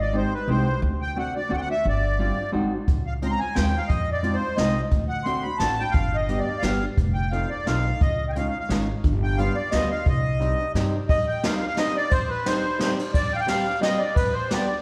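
Whirling and bittersweet, this fragment of a musette waltz in C harmonic minor moves at 175 BPM in 3/4, with a reedy, sweet accordion carrying the melody up front in light tremolo tuning over a clean, picked hollow-body electric jazz guitar and a woody, thumpy pizzicato upright bass on gut strings. A brushed jazz drum kit, distant and roomy with dark cymbals and a boomy kick, enters at 2.9 seconds, and the bass drops out at 11.0 seconds as the music turns toward a new section that settles on G. A moderate scoring-stage reverb places the ensemble further back in the room.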